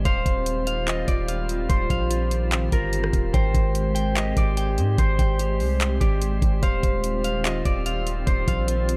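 A tape-toned trap kit with a knocking kick, bright hi-hats, handclaps and rim clicks sits up front from 0.1 s, beside a deep, mellow sine 808 bass whose long notes decay, in this floating, dreamy excerpt of atmospheric cloud-rap at 146 BPM in half-time 4/4, in Eb major. A bright, ringing fingerpicked Celtic harp carries the melody through delay, while a slightly broken-up electric guitar plays fingered arpeggios, also through delay. A warbling, ethereal vintage FM pad with chorus, reverb and sidechain pumping holds chords moving from Eb69 to Abmaj7 and back, with a calm, glassy texture of drifting overtones in the background and digital ambience around it all.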